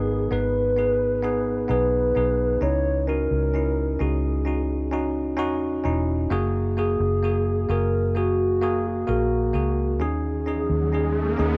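Longing and melancholic, this slow pop ballad excerpt in G# minor moves at 65 BPM in a straight 4/4, passing from G#m through C#madd9 and F#add9 to a suspended D#7sus4. A hollow, woody clarinet-like synth lead with chorus and vibrato carries the melody over a bell-like tine electric piano and a round, foam-muted vintage electric bass, both placed up front. A moderate plate reverb surrounds the parts, and an electronic riser enters at 10.6 seconds as the passage is cut off.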